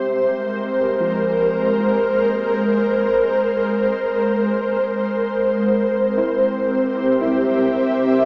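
An ethereal, detuned synth pad holds sustained chords up front, its slow attack, chorus and tremolo moving from Abmaj7 to C7 at 5.7 s, while a soft, round pluck traces dark arpeggios in the background and fades out across the whole 8.3 seconds. This luminous, weightless ambient fragment in Ab major drifts at 58 BPM in 3/4, cut from a longer piece. An echo-heavy mix and a wet chamber reverb surround it, with a small-speaker sound.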